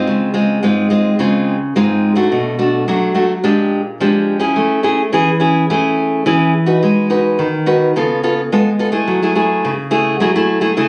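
A straight 4/4 samba pulse at 106 BPM carries this joyful, playful short cut from a longer piece, where a solo nylon-string guitar, fingerpicked in a classical manner with fresh strings and sitting up front, moves through chords from C#maj7 and Bm7 to Amaj7, C#7b13 and a closing F#m9 between G#2 and B4, tuned to A4 = 439 Hz, and is heard through a phone recording in the room with light studio reverb and a top end that stops at 10.4 kHz.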